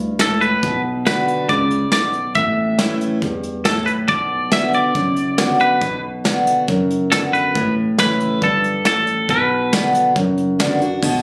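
A twangy, bright electric guitar carries the melody up front with plate reverb, playing from 0.2 to 9.9 seconds over a full-bodied picked steel-string acoustic guitar in this brooding, heartbroken honky-tonk and classic country excerpt in B minor at 138 BPM. A round, deep analog bass sits in the background beneath a soft brush drum kit with dark cymbals and a punchy kick, while the chords move mostly between Bm and A. The whole fragment has the club reverb of a phone recording made in the room.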